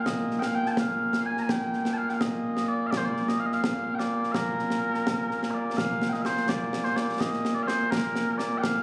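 In 6/8, this short cut from a longer piece of Scottish pipe music carries a proud, ceremonial air, with mellow small bagpipes singing a sweet, continuous melody with vibrato up front while concert snare drum and concert bass drum, close and dry with bright cymbals, drive alongside, also up front, all set in a concert hall reverb heard as if captured on a phone in the room, and a new section arriving at 5.8 seconds.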